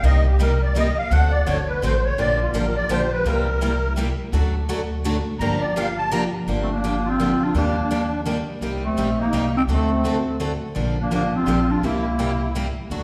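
Acoustic string swing in the jazz manouche tradition, this fiery, virtuosic fragment of a longer piece moves in a swung three-beat metre. A reedy musette accordion with a shimmering, wet tuning takes a solo over the first 6.5 seconds, then carries a second line once the melody arrives. Two picked steel-string acoustic guitars supply accompaniment throughout, one a boxy parlour instrument with fresh strings and the other a full-bodied dreadnought, both bright. Up front, a woody, dark pizzicato upright bass anchors the low end, and at 6.6 seconds a growling clarinet enters with the melody, raspy and gritty in tone, with vibrato and scooped notes in a jazz style. The harmony moves through minor sevenths, dominant chords and a major seventh, and the ensemble sits in the reverberant space of a church or concert hall.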